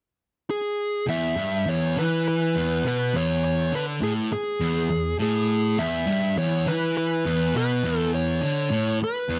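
A straight 4/4 rock groove at 102 BPM in E major carries a swaggering, sunny mood through this short cut from a longer piece. A dark, smooth lead guitar opens at 0.5 seconds, its overdriven melody ringing with slapback echo. At 1.1 seconds two picked rhythm guitars join on a low E5 riff, one bright and compressed with distortion and the other sludgy and overdriven, all captured up front in a dry, close 1970s-style studio sound.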